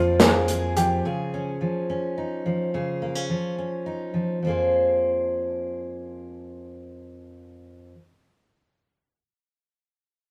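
A rough rehearsal-room recording with light reverb frames this short, bittersweet and stirring indie folk fragment in a lilting 6/8 with a straight feel. A fingerpicked steel-string acoustic guitar carries the accompaniment throughout, its jumbo body sounding full and bright up front, with audible finger squeak. For the opening second, a woody upright piano adds brilliant, intimate arpeggios with audible action noise, while a dark, round electric bass gives a punchy picked low note and a natural country drum kit touches hi-hat and a medium-tuned snare from a small room. After those parts drop away near 1.0 seconds, the guitar alone moves from the Fmadd9 opening to Dbadd9 and settles on F minor around 4.4 seconds as a new section begins. The arrangement suggests a piece that builds, though this clip leaves the guitar to carry most of it by itself.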